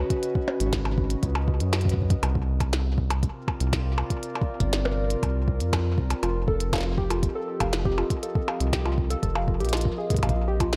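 A round, deep analog bass sits up front in this wistful, playful IDM excerpt at 120 BPM, while a warbly, nostalgic tape-like pad drifts underneath through suspended ninth chords, softened by chorus, phaser and its own reverb. A soft, overdriven electronic kick and a glitchy kit of tiny snare, clicky hats and percussion blips, given tape echo, carry a straight 4/4 pulse with a small-room grit. At 6.2 seconds a dusty, detuned pluck enters with lo-fi arpeggios, bathed in lush chorus and analog delay, deepening the echo-heavy digital ambience.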